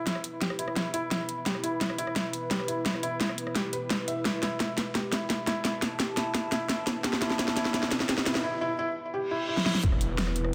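A dense, heavily limited modern master with a moderate plate reverb frames this short build-up from a dark technical drum and bass track, and the mood is mechanical and futuristic. A soft, felt-muted upright piano plays mellow, intimate arpeggios through a low-pass filter and delay, while a moody, nasal analog pad holds sustained chords in the background and a nostalgic, warbling tape-like pad adds lo-fi texture with chorus and its own built-in reverb until about 8.4 seconds. The pads and piano all pump with sidechain compression. Up front, a layered electronic kit with a huge snare, metallic hats and rim clicks drives a drum fill in a small room, supported by a punchy, tape-tinged electronic kick that sits further back. From 6.8 seconds a very quiet riser, reverse cymbal and impact mark the approach, and at 9.8 seconds a snarling, growling distorted saw bass bursts in on a low E, aggressive and compressed, as the impact lands.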